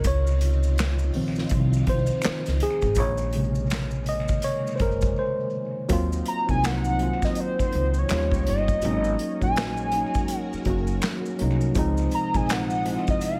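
Smooth and soulful, this neo-soul R&B excerpt moves at an unhurried 82 BPM in 4/4 with a swung sixteenth-note feel, set in Eb dorian and tuned slightly flat of standard pitch. A worn, slightly out-of-tune tine electric piano, clean through a combo amp, carries the opening as a featured solo over chords moving from Dbmaj9 to Bbm7, with a short break just before the second section arrives at 5.9 seconds. Underneath, a woody, thumpy upright bass with gut strings is plucked up front, while an acoustic drum kit in a studio room brings a punchy kick, medium-tuned snare, hi-hat and handclaps played with bundle sticks. A lush vintage string machine sits in the background with slow-attack sustained chords and ensemble chorus, and distant maracas and finger snaps add a faint, echoed shimmer from a large room. At 6.3 seconds a hollow, nasal square-wave lead enters with the melody, mellow and sustained with vibrato, chorus and tape echo, as the harmony passes through Ebm69, Eb7 and Ab9sus4 before returning to Dbmaj9. 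The mix is echo-heavy with light studio reverb.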